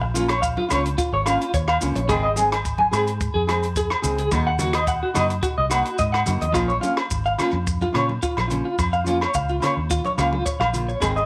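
An electric guitar at the edge of break-up, picked and compressed with tremolo and slapback echo, spins up-front arpeggios over a round, foam-muted fingered bass, a full-bodied fingerpicked nylon-string guitar, a dry cocktail drum kit with punchy kick, hi-hat and rim click, bright thin-skinned congas in the background, grainy maracas and distant ringing agogo bells in this warm, danceable highlife guitar band excerpt at 108 BPM in Bb minor, moving through Bbm, Ab and Ebm in a light small room before returning to Bbm at 6.5 seconds.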